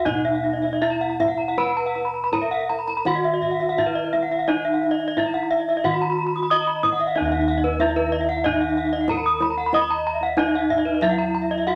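Shimmering and hypnotic, this short cut from a longer Balinese gamelan piece moves at a straight 79-93 BPM in Eb pelog, with a bronze metallophone carrying the melody up front in a vintage, band-limited tone while two more horn-mallet metallophones spin arpeggios above it, one dark and smooth, the other bright, their paired tuning producing beating shimmer. Underneath, bossed gongs supply a round, full bass, close-miked and dry, and a kendang adds deep, soft-handed drumming in a small-room sound. A wet studio reverb surrounds the ensemble, and the music shifts into a new section at 7.2 seconds.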